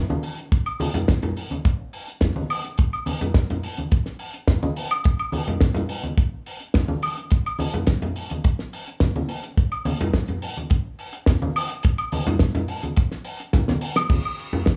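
Ringing, hard-handed congas open this sleek, cosmic nu-disco excerpt at 106 BPM in a straight 4/4, joined almost at once by a damped 70s drum kit with a fat, dry snare, hi-hat, crash cymbal and woodblock, and a tight, up-front acoustic kick, all set in a small room with light reverb before a drum fill at 13.5 seconds.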